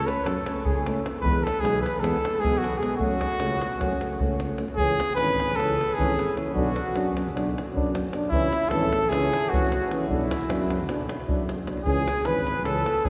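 In a straight 9/8, this bittersweet, fiery stretch of Balkan brass band music is set in a cavernous church-like space with a long, wet reverb. A mellow cornet carries the melody up front with light vibrato, shadowed by a distant flugelhorn on a second line, while a dark euphonium and a smooth-topped trombone fill out the accompaniment in the background. A tuba holds the bass beneath a tight, close davul, and the music shifts from F#m and E chords into a passage alternating C#m and Bm at 4.8 seconds.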